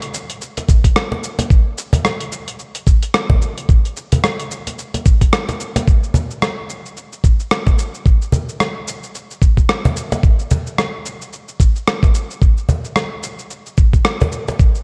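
Meditative and mystical, this short downtempo cut from a longer piece moves at 110 BPM in 4/4 with a lazy 16th-note swing. A dusty, sampler-style soul drum kit opens at 0.0 seconds, its cabasa, hi-hat and rim click sounding gritty, compressed and tape-warm, sitting up front but fairly low in level. An acoustic cajon joins at 0.6 seconds, woody and struck with hard hands, with faint snares rattling in a small-room ambience. An electronic kick drum arrives at 0.7 seconds and is the loudest part, a thumpy, sampler-style low end that also carries a gritty, tape-warmed character. The production is dark with light reverb, and the groove moves from its opening section into a second one at 5.9 seconds, running until 14.8 seconds.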